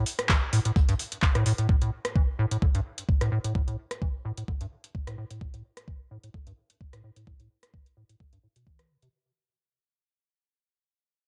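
A squelchy, resonant square-wave acid bass riff with a filter sweep and sidechain pumping opens this trippy, raw acid house excerpt, joined by a thumpy electronic kick drum, an electro analog drum machine with metallic hats, handclaps and rim clicks, and a very quiet, saturated breakbeat kit heard only until 1.6 seconds, all captured dry and gritty on cassette tape as the whole passage fades out.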